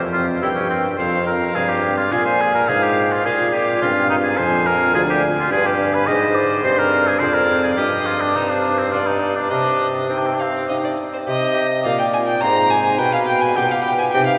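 Flowing and introspective, this excerpt from a baroque-style sonata movement in triple time sets an up-front oboe melody, light in vibrato and vintage in colour, over a gut-string violin second line whose bowed tone turns almost reedy. Beneath them a mellow, smooth-topped bassoon carries the bass with vibrato, while a bright, delicate lute fingerpicks the continuo on double gut strings, some doubled at the octave. A long, wet cathedral reverb bathes the ensemble in the glow of a church or concert hall, and the harmony moves from minor-key shadings toward a new section at 11.3 s.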